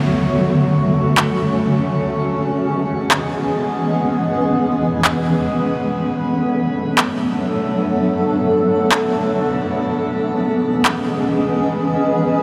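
Floating in free time, this hazy, spacious piece of atmospheric cloud-rap comes from a longer track and drifts along. A granular cloud pad sits up front throughout, holding sustained chords that alternate between Bm7 and C#m7. Its cloudy, blurred tone evolves, with a slow attack, a long release and its own built-in reverb. At the very start, a fingerpicked Celtic harp rings out bright arpeggios that are barely audible and stop by 0.9 seconds, while an electronic downlifter sits in the background. From 1.2 seconds to 11.0 seconds, tape-warm electronic handclaps add a produced edge to the haze. A moderate shimmer reverb with a long tail adds to the sense of space.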